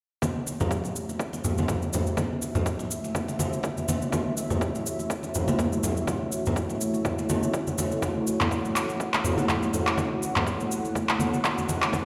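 Cut from a longer afro house piece, this spiritual, earthy groove opens at 0.2 seconds with ringing acoustic congas struck with hard hands, a punchy, overdriven electronic kick and layered, up-front electronic shaker and handclaps on a swung sixteenth feel, joined at 0.6 seconds by a deep, moody analog pad of detuned sawtooth and triangle tones with a sub octave, chorus and sidechain pumping sustaining one chord, the mix sitting in a moderate concert-hall reverb like a big sound system in a bare room.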